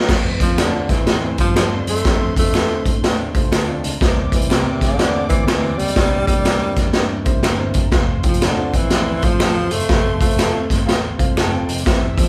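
Uptempo 1960s-style soul at 122 BPM in F major with a swung, uplifting and danceable feel, cut from a longer piece, where a breathy, close-miked tenor saxophone carries the melody over a punchy, gritty garage drum kit, a growly fingered electric bass, an intimate baby grand piano with audible action noise, very quiet dark guitar stabs through a small old amp, a mellow flute-like tonewheel organ holding sustained chords, veiled muted strings playing a distant second line, and soft finger snaps, all captured as a band playing live in one room with moderate studio reverb.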